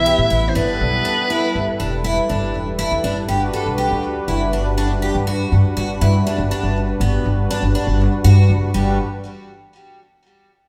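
This excerpt from a driving, intricate progressive instrumental in G major, in 11/8 at 242 BPM counted in eighths, opens with a present soprano saxophone melody with vibrato over a growling, raspy trombone second line set back in the mix. Both horns are gone by about 2 seconds, while a brassy, detuned sawtooth pad with chorus and a woody, thumpy pizzicato upright bass up front carry on. Just after the start a shimmering, octave-doubled twelve-string acoustic guitar enters with picked arpeggios through digital delay, and the harmony moves from Cmaj7 and G69 to Gmaj7 at 3.3 seconds before the chords drop out at 8.7 seconds, all played live by a band in one stone room with a wet reverb.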